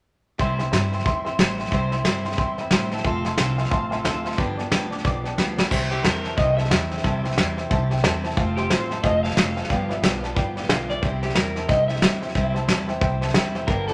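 A swung 4/4 groove drives this rollicking, rowdy rockabilly excerpt, with a soft brush kit up front, dark cymbals and a tight kick, while a thumpy, woody pizzicato upright bass on gut strings moves under a jangly, detuned honky-tonk upright piano and a full-bodied picked steel-string acoustic guitar, all in a moderately reverberant large studio. The boxy, vintage piano drops in short fills, and a drum fill around 5.4 seconds leads into the second section. At 5.9 seconds a twangy, slightly broken-up electric guitar through a small old amp takes the lo-fi lead melody over a chord cycle that moves from C to F to G7 and back.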